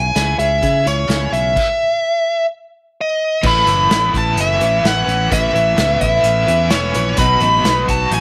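A light reverb gives this short cut from a longer folk rock and heartland rock piece a studio-room feel, with a hopeful, open-road mood at 128 BPM in a straight 4/4, tuned slightly sharp to A4 = 445 Hz. Up front, a bluesy, distorted lead guitar carries the melody in a warm upper register, set over a shimmering, octave-doubled twelve-string acoustic guitar that is picked as accompaniment. A fingered electric bass gives a punchy low end, while an unplugged acoustic kit played with bundle sticks adds a medium-tuned snare, punchy kick, hi-hat and crash. After opening on C#m, the band breaks into a stop from 1.6 to 3.4 seconds. At 3.4 seconds, a bright, crunchy, double-tracked overdriven guitar enters with a tremolo-tinged riff as the harmony moves from Aadd9 to B.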